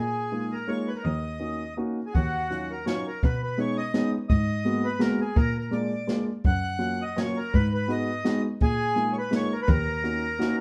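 A reedy, airy accordion bathed in plate reverb carries the melody of this bittersweet, whirling musette waltz in Eb minor at 167 BPM, its 3/4 lilt lightly swung and rubato, over a clear, bowed cello bass with focused vibrato and a woody, intimate upright piano whose action noise is audible, while a dark, smooth brushed drum kit with a boomy kick joins at 2.1 seconds, the ensemble heard from further back in a moderately reverberant studio in this excerpt cut from a longer piece.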